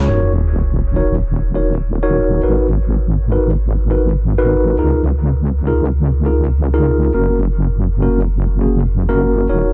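A heavy, wobbling bass sits up front in this funky, playful glitch hop excerpt, its detuned sawtooth and sine tones resonant, with tube saturation and a layer of chorus. It moves at 102 BPM in 4/4 with a swung sixteenth-note feel, in Eb minor, staying low between Eb1 and Db2. A mellow tine electric piano plays clean stabs from the start, its tone softened as if heard through built-in speakers and trailed by dub echo. In the background, an electronic sub drop lands as an impact from 0.1 to 2.4 seconds. The chords move from Ebm7 to Abm9, then Db69 and Gb. The mix is dry and close, with a dark top end, and the clip is cut from a longer piece.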